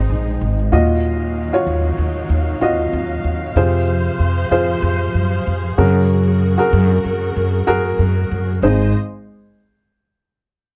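This dry, close recording in a 1970s studio style carries a touch of light reverb and is cut from a longer piece. It is uplifting piano-driven pop at 95 BPM in 4/4, with a gentle swing on the sixteenths, set in Ab mixolydian and tuned to A4 = 438 Hz. A dark, mellow upright piano with short sustain sits up front as accompaniment, beside a pizzicato upright bass on steel strings that sounds woody and growly. Behind them, a lush bowed string section holds sustained chords with vibrato and a smooth top. The harmony moves from Ab through Ebmadd9, Fm and Gbadd9, and all three parts play from the opening until 8.9 seconds, with a new section returning to Ab at 8.6 seconds.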